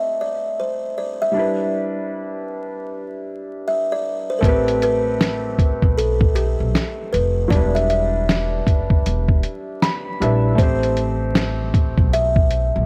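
A lazy swing on the sixteenths in 4/4 sets this reflective, hazy lo-fi hip hop excerpt in motion, opening with a buzzing, hollow-boxed kalimba carrying the melody over a soft, thin-felt upright piano moving between Am7 and Em7 chords. At 4.4 seconds a growly, woody pizzicato upright bass and a compressed, sampler-style drum kit with a thumpy kick, medium-tuned snare and hi-hat arrive up front as the harmony shifts to Am9. Vinyl crackle, light reverb and studio ambience wrap the parts in a soft haze.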